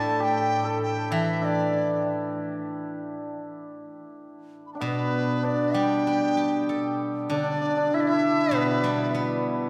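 Bathed in a long, wet cathedral reverb, this festive, pastoral Chinese chamber piece, cut from a longer work, moves at a rubato 97 BPM in 2/4 in G gong mode: a reedy large bamboo dizi with a buzzing membrane sings the melody from the start, drops out at 2.1 seconds and returns at 4.7 seconds, while a shimmering, up-front hammered dulcimer carries a second line and a silvery, fingerpicked steel-string zither rings beneath in accompaniment.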